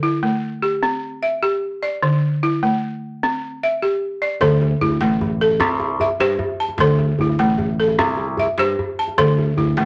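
A woody, buzzing balafon struck with hard rubber mallets opens this hypnotic West African traditional piece alone, rolling arpeggios up front over alternating C and D5 chords at 101 BPM in a straight 12/8. At 4.4 s a growly, punchy fingered electric bass and a tight, cracking djembe join in beneath it, all set in a moderate studio reverb.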